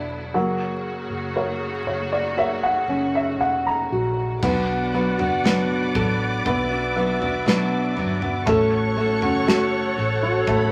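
A dark, full-bodied nylon-string guitar carries the longing melody of this slow B minor pop ballad at 59 BPM, set over an intimate baby grand piano with audible action noise, a lush, distant bowed string section and a round, foam-muted electric bass, all wrapped in vinyl crackle and a wet studio ambience. The piano adds a fill from 1.4 seconds, and at 4.4 seconds a picked steel-string acoustic guitar enters with auditorium-toned arpeggios alongside a polished studio drum kit with bright cymbals and a tight kick as the harmony moves to Bm and then F#m. This emotional passage is cut from a longer piece.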